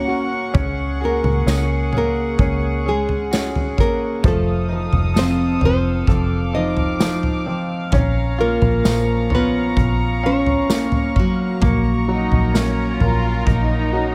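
A studio reverb surrounds this heartfelt, tender pop ballad excerpt in a straight 4/4, where a fingerpicked nylon-string guitar with a full-bodied classical tone carries the melody over a polished grand piano and reedy, gut-string bowed strings holding sustained chords. A twangy, clean electric guitar picks compressed arpeggios with subtle chorus in the background, while a dark, round, foam-muted fingered bass sits up front beside an acoustic drum kit played with bundle sticks, its punchy kick entering at 0.5 seconds, and a jingly tambourine joins at 1.5 seconds. At 12.1 seconds a lush symphonic cello section adds a smooth second line with vibrato and digital delay.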